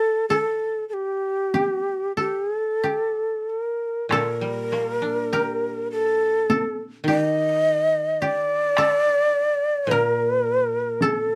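Free, rubato time in 4/4 carries this solitary, meditative fragment of Japanese traditional chamber music, where an end-blown bamboo shakuhachi, close-miked and breathy with vibrato and tongued notes, sings the melody up front over a dry, woody koto playing a second line with fingerpicks, while a taiko ensemble struck with heavy sticks enters at 1.5 s in a live room and a lower koto accompaniment joins at 4.1 s, framed by a dark production with light reverb.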